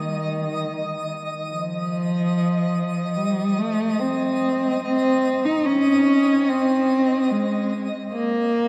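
Drenched in a cathedral reverb with a 6.6-second tail, this weightless, peaceful ambient fragment in free time, cut from a longer piece, places a single dark, bowed cello up front, singing an expressive melody between Eb3 and Eb4 with vibrato, portamento and a smooth top through a diffuse ambient delay, while a quieter, twinkling granular FM texture with octave-up shimmer and its own built-in reverb sustains a high Eb5 and fades out gradually across the whole fragment, before everything fades out from 5.9 to 8.7 seconds.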